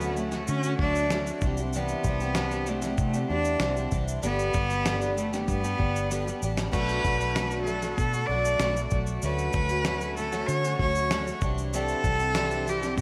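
Heartfelt and sunny, this acoustic pop excerpt moves at 96 BPM in a straight 4/4, with a clear, focused bowed cello carrying the melody up front, its vibrato trailed by a digital delay, over a shimmering, octave-doubled fingerpicked twelve-string acoustic guitar with audible finger squeak. A reedy, breathing pedal harmonium holds sustained chords in the background, while a dark, round, foam-muted electric bass and a gritty, tape-warm sampler-style drum kit with thumpy kick, fat snare, shaker and crash supply the low end and groove, with a drum fill at 6.1 seconds. The chords move from Dmaj7 through Cadd9, G and Bm7, and a moderate concert hall reverb gives the whole a big arena sound.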